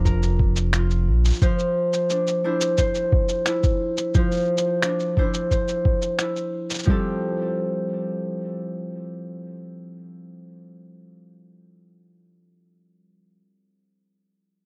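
A straight 4/4 pulse at 88 BPM carries this pastoral folktronica excerpt in F major, built on a thumpy, muffled electronic kick drum that sits up front and a pitched-down, sampler-style layer of electronic cabasa and finger snaps, both compressed and tape-warm as if re-recorded in a small room; the percussion runs from 0.1 s to about 7.0 s. A bright, ringing Celtic harp plays fingerpicked arpeggios from F3 to C5 throughout, its acoustic tone treated with tape echo. A round, deep analog bass, dark and sustained with a fast attack and an evolving blend of sawtooth, sine and triangle, sounds only briefly at the opening, between F1 and Bb1, stopping at 1.3 s. The harmony moves from Bb/F to Cadd9/F over an F pedal, then settles on Fadd9 as a second section begins at 6.9 s. The sound is dry and close, in the manner of a 1970s studio recording, with little reverb and an overall warmth.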